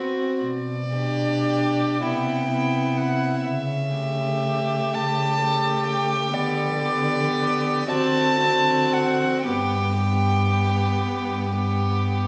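A slow, rubato string quartet movement in G major opens with the cello, viola and second violin sounding together from the start, the cello's dark, woody tone sitting up front at the bottom while the viola fills the middle. Almost at once the first violin enters with the melody high above, its pure, floating sound carried on an airy, sul tasto bow and placed close and forward. Beneath it the second violin plays a gentle second line with light vibrato, its intimate tone matching the viola's soft-attack, veiled bowing. Set in 6/8 at roughly 36-44 dotted-quarter beats per minute, the music has a yearning, melancholic character, its harmony passing through G/B, Cmaj7, A7/C# and D7 before settling on G near 9.5 seconds. A generous recital-hall reverb, with a decay of about 1.6 seconds, surrounds the closely heard players with the resonance of a church or concert hall, and the passage is cut from a longer piece.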